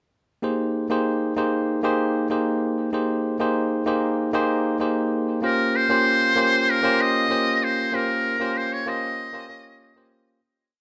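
Bathed in a wet concert-hall reverb, this sunny chillout piece at 96 BPM in Ab major opens at 0.4 seconds with a bell-like tine electric piano playing dotted-rhythm chords in rootless voicings through tape echo, joined at 5.4 seconds by a buzzy, metal-muted trumpet with vibrato that spins a free, classical-style solo melody, also touched by tape echo, before the piece fades out from 7.1 seconds.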